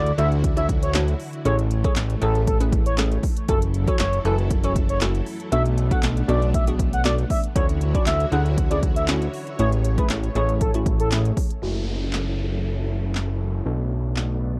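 This dance-pop excerpt, cut from a longer piece, moves at 118 BPM in a straight 4/4 in F# minor, with a confident yet bittersweet mood. It opens already in the drop, where a smooth, expressive sawtooth synth lead with vibrato, chorus and tape echo carries the melody until 11.1 seconds. Beneath it, a glassy, crystalline wavetable pluck with a nasal edge and a string machine with cellos, full and vintage with a mellow ensemble chorus, both pump to the sidechain behind low-pass filters. A fat, detuned analog bass sits up front and also pumps. A punchy deep house kit of kick, snare, handclaps and smooth hi-hats drives the groove. The chords cycle through Dmaj9, Amaj7, F#m7 and Bm7, and at 11.6 seconds a filter sweep takes over while a downlifter enters, all captured in a dry, close 1970s-style studio sound.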